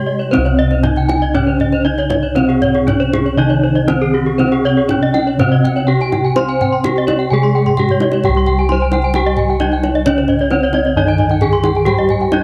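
This Balinese gamelan excerpt is brilliant and hypnotic, moving in a straight 4/4 at 118-132 BPM in C pelog. Up front, a bright, ringing bronze metallophone struck with a horn mallet carries the melody, its paired tuning producing shimmering beats, with tape echo and a cassette tint. Below it, a second metallophone played with a wooden mallet supplies the accompaniment, while two more horn-mallet metallophones spin arpeggios higher up. One of these sits in a boxy small room, and both carry tape echo. Round, mellow bossed gongs struck with padded beaters anchor the bass with a soft, dry, close-miked fullness, and a deep kendang played with hard hands enters at 0.2 s. A drum fill from 7.7 to 8.2 s leads into a new section, and the whole recording has the light reverb and homespun character of a cassette made at home.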